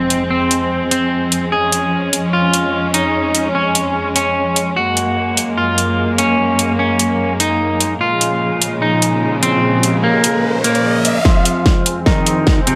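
An electric guitar at the edge of break-up carries the melody from the start, its twangy, fingered tone softened by a low-pass filter and trailed by digital delay. Beneath it, a rich bowed string section holds sustained chords with smooth vibrato, pumping under sidechain compression and also filtered. The half-time dubstep drum kit brings a huge snare and metallic hats with a tape-warm character in studio reverb, setting a heavy, menacing mood. An electronic riser creeps in at 9.6 seconds, and at 11.3 seconds a build-up begins as a punchy electronic kick joins, a drum fill arrives, and filter sweeps pass over both the strings and the guitar. This section, cut from a longer piece, moves through Fm, Db/F, Gbadd9 and Bbm7 before returning to Fm.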